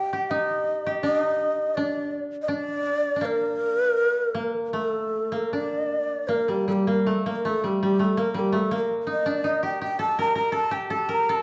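Still and austere, this 11.4-second excerpt of Japanese traditional music drifts in an uneven, rubato four-beat feel, with an up-front, breathy bamboo shakuhachi carrying the expressive melody in long, soft-edged tones with vibrato and lifted highs, while an up-front, woody koto plucked with fingerpicks plays a second line beneath it, all set in a dark, warm production within the reverberant bloom of a recital hall.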